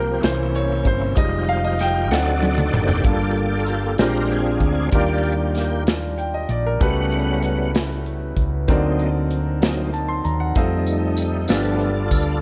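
Slow, fervent gospel in 6/8 at 64 BPM, settling into G minor, where a clear, open grand piano takes the opening solo over a dark, round hollow-body bass and a punchy studio drum kit whose fill leads at 3.0 seconds into a gritty, overdriven tonewheel organ solo through a fast rotary speaker and chorus vibrato, with a mellow French horn section holding chords in the background from 3.1 seconds, a jingly tambourine joining at 10.9 seconds, and rich extended chords such as Gm9, Ebmaj9 and D7b9b13 sitting in light small-room reverb.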